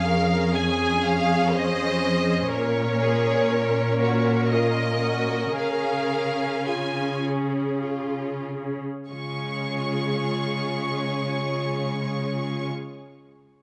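In a flexible, rubato triple metre, this tender, moving film cue for string orchestra gradually slows from 1.0 to 9.1 seconds, where a new section begins. A rich violin section sits up front with the melody high in its register, its bowed tone smooth and even with steady vibrato. A second violin section carries a supporting line an octave lower, sitting a little further back in the blend. A warm viola section fills in the accompaniment, while a focused, lush cello section anchors the bass near the front. Moderate reverb from a scoring stage gives the ensemble a spacious bloom in this passage cut from a longer piece.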